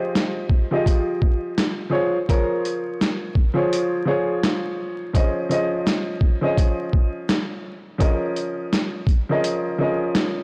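A swung 84 BPM boom-bap groove in 4/4 drives this dark, tough hip-hop excerpt, its pitched-down, gritty sampler drums punching up front with a thumpy kick, high-tuned snare and hi-hat, all overdriven, from 0.2 seconds. A woody, mellow upright piano with short sustain and a cassette-tape tint carries the Fm7, Bbm7/F, Dbmaj7/F and Eb7sus4/F changes throughout, while a small, fingerpicked nylon-string guitar melody sits in the background with slapback echo until 4.4 seconds. The whole recording is blown-out and overdriven, with vinyl crackle, light reverb and a small room ambience.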